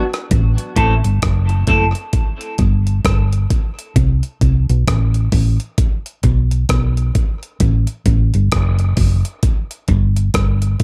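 Spacious and hazy, this slow dub reggae excerpt with a swung feel opens on a bright, twangy clean electric guitar, coloured by phaser and tape echo, that sounds only for the first 1.9 seconds. A gritty, compressed breakbeat sampler-style drum kit with a thumpy kick, hi-hat and rim click carries on beneath a dark, round, punchy hollow-body bass that sits up front. Chords of Am and F#m alternate with chordless stretches, all bathed in an echo-heavy digital ambience.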